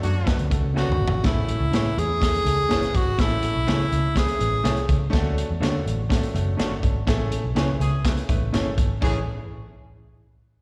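This joyful, uplifting 1960s-style soul piece opens on a band accent, with a tight horn section, a woody upright piano, a punchy foam-muted electric bass and a crunchy breakbeat kit hitting together over a Dmaj7 chord, in A major at an uptempo 123 BPM. As a drum fill kicks in, a breathy, close-miked tenor saxophone takes the melody at 0.8 seconds, its scooped notes and jazz-style phrasing up front, while a slightly broken-up, lo-fi electric guitar adds stabs from the background. The kit is saturated and gritty, with dark cymbals and a rolled-off top, and the round, amped bass sits up front beside it. The harmony moves between Amaj7 and Dmaj7, and after the saxophone drops out at 4.9 seconds, the horns return at 7.8 seconds with a light-vibrato second line during another band accent. Slapback echo on the horns, piano, saxophone and guitar, plus light recital-hall reverb, gives the recording the sound of a live gig heard through the venue's PA.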